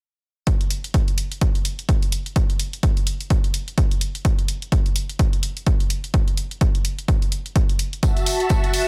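Piano house with an energetic, soulful mood, this short excerpt opens at 0.5 seconds with a punchy electronic kick drum placed up front and an analog, tape-warm electronic hi-hat, both carrying the resonance of a large room. For most of its length the groove rests on these two drum parts alone, with the harmony unstated. At 8.0 seconds a vintage string machine voicing violins arrives with a bright, shimmering sawtooth tone, its soft-attack sustained chords settling on F#m7 up front in the mix, thickened by ensemble chorus and breathing with sidechain pumping. A close, acoustic tambourine joins at the same moment, sitting in the background with a texture that also suggests maracas and group handclaps. The whole passage unfolds as a single section in a digital ambience and is cut from a longer piece.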